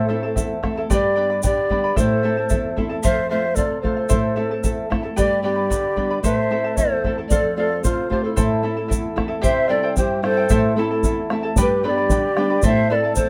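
Heard in a moderate small room, this earthy, wistful Andean folk excerpt in A minor moves at 112 BPM in 2/4. A mellow, hollow pan flute carries the melody over a breathy large quena with vibrato on the second line, a shimmering fingerpicked charango with double strings, and an up-front nylon-string guitar with finger squeak. A deep, dry bombo and a grainy egg shaker join at 0.4 s, and the harmony turns to C at 9.4 s.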